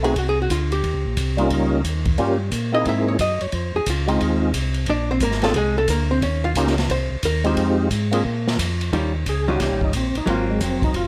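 Soul jazz organ trio at a brisk 178 BPM in 4/4 with a swung, bluesy feel in Eb mixolydian, this excerpt opens with a dark, clean, compressed hollow-body guitar solo up front, then hands the spotlight to the percussive organ at 8.9 seconds, its lightly overdriven, key-clicking tone colored by chorus vibrato and a slow rotary speaker. Beneath them, a smooth organ bass line turns through a slow rotary speaker while an acoustic kit in a small room supplies hi-hat, ride, snare and a punchy kick under dark cymbals. Light reverb frames the trio as the changes run through chords such as Eb9, C7alt, Fm7 and Bb9.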